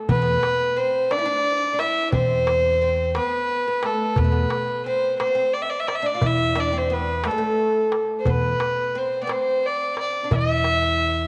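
Hypnotic and melancholic, this short passage cut from a longer Arabic maqam ensemble piece moves at a slow 59 BPM in a straight 6/8, set in E maqam hijaz with tuning pitched at A4 = 438 Hz. A single bowed violin carries the melody up front, its gut-string, period-style voice sounding dark, nasal and reedy with a slightly boxy edge as it ranges from A4 to E5. Beneath it, a fretless, plectrum-plucked oud with doubled strings adds a woody second line between G#3 and F4+25c, held lower in the balance. An upright bass played pizzicato on gut strings anchors everything on E2 with a thumpy, dusky weight, while a metal-shelled darbuka, struck with soft hands, sits close and dry with a crisp snap until 10.8 seconds. The ensemble is bathed in a lush echo-chamber reverb with a 2.5-second decay, giving the whole 11.3-second passage a deep, lingering space.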